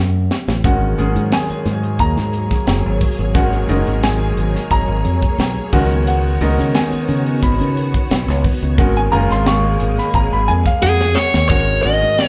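Funky and driving, this short excerpt of electric jazz fusion moves at 88 BPM in a straight 4/4, set in G# dorian. A bright, direct fingered electric bass opens the track at 0.0 seconds, joined by a tight funk kit with a high-tuned snare, hi-hat and tight kick, with drum fills marking the start and the closing stretch. A brilliant grand piano with long sustain carries the accompaniment over suspended ninth chords moving from G#9sus4 to C#9sus4 and back, while a silky string machine with slow attack and ensemble chorus lays soft sustained chords underneath. At 10.8 seconds a biting, overdriven lead guitar steps in with a picked melody, sitting loudest in the mix as the harmony settles on G#7sus4. The band sounds like it is playing live together in a large studio, with a moderate reverb giving the polished, up-front parts a sense of space.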